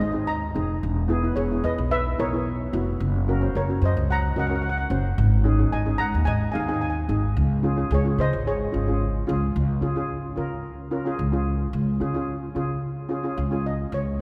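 A sunny, festive calypso excerpt opens with two shimmering double-seconds steel pans struck with medium rubber sticks, both with a boxy small-room colour, one carrying the melody and the other an up-front accompaniment, over a woody, growly pizzicato upright bass on steel strings, all bathed in a lush church reverb, with the melody pan stepping away at 9.2 seconds before an accompaniment fill from 12.8 seconds and a brief melodic return at 13.7 seconds.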